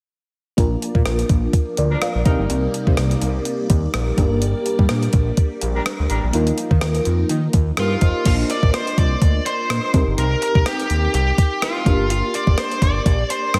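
A thumpy, gated digital drum machine drives a lightly swung 125 BPM groove in 4/4 with kick, rim click, hi-hat and crash, sitting up front beside a fat, detuned sawtooth analog bass in this nostalgic, uplifting 1980s-style pop piece in Bb major. An FM electric piano with tremolo, phaser and slapback echo carries the chords, while a swirling, bright string machine with ensemble chorus hangs in the background until 8.2 s and a punchy, tight horn section adds brief stabs. At 7.8 s a distorted, high-gain lead guitar takes the melody with digital delay, and the mix is bathed in a lush hall reverb for a big arena sound.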